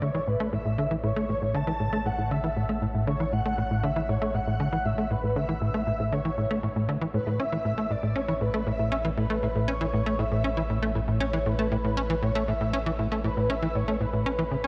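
A huge, wet ambient reverb with a long 8.3-second tail surrounds this luminous, expansive stretch of sequencer-driven space music in A major, moving at 118 BPM in a straight 4/4 and cut from a longer piece. A tight, punchy sequencer bass drives a sawtooth-and-square riff with ring modulation, filter pluck and subtle chorus, while a round sine sub bass holds a deep, mellow A1 beneath it. Up front, a breathy, flute-like synth lead with a soft attack and a noise layer sings the melody between B4 and A5, shimmering with tremolo, vibrato, ensemble chorus and tape echo.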